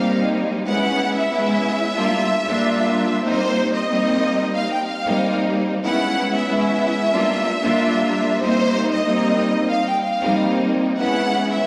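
A reverb-soaked, dreamy mix with vinyl crackle and lossy artefacts frames this dark, gritty hip hop excerpt at 93 BPM with a swung 16th feel, where a rich, up-front violin section carries the melody through diffuse ambient delay while a clear symphonic string section, tinged with cassette tape character, plays the accompaniment over brooding chords that circle Cm7, Dbm7 and Gm7 for the full 11.7 seconds.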